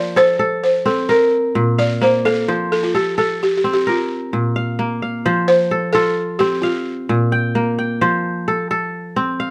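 A moderate studio room lends a close, up-front sound to this joyful, hypnotic West African traditional cut from a longer piece, set in a lilting 12/8 that moves between F and Bb5 chords. A woody, buzzing balafon struck with soft rubber mallets carries the melody under a touch of plate reverb until 7.3 seconds. A crisp, ringing fingerpicked kora weaves acoustic arpeggios beneath it and carries on to the end at 9.5 seconds.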